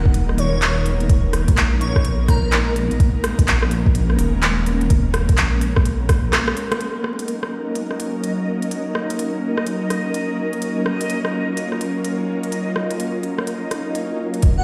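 Wistful and rainy, this future garage excerpt moves at 126 BPM in Eb minor with a swung 16th-note feel. An ethereal, warbling pad holds sustained chords up front throughout, moving from Abmadd9/Eb to Ebm7, its ensemble chorus and reverb pumping against the sidechain alongside a deep, rumbling detuned saw bass with tube saturation. A soft, overdriven electronic kick and a crisp, overdriven kit of handclaps, hi-hat and rim click carry the groove, and a soft, dreamy lead with chorus, tape echo, vibrato and portamento sings briefly near the start. As a drum fill builds toward a band accent, the bass and kick drop out around 6.3 seconds, leaving the pad and kit as a reversed, granular texture rises on a single high note from 7.3 seconds and a background electronic swell arrives at 13.7 seconds. The whole mix sits in a lush hall reverb and a stony room sound, as if played over a big system, with vinyl crackle adding a vintage grain.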